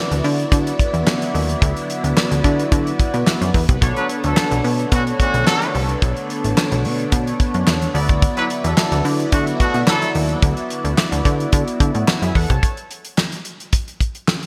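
A dry, up-front 70s drum kit with a fat snare, tight kick, hi-hat and handclaps, wrapped in gated reverb, drives this danceable, late-night early-eighties boogie funk cut from a longer piece, joined by a punchy, funky analog bass with a plucky filtered attack. A glossy, detuned chorused polysynth and a shimmering string machine of violins, the latter treated with phaser and ensemble chorus and sitting in the background, sustain chords over D69 and Bm9, while a distant, roomy horn section with light vibrato and delay carries a second line from 4.0 to 10.1 seconds. In this bright 1980s-style digital production, the drums carry on to 14.5 seconds after the other parts finish.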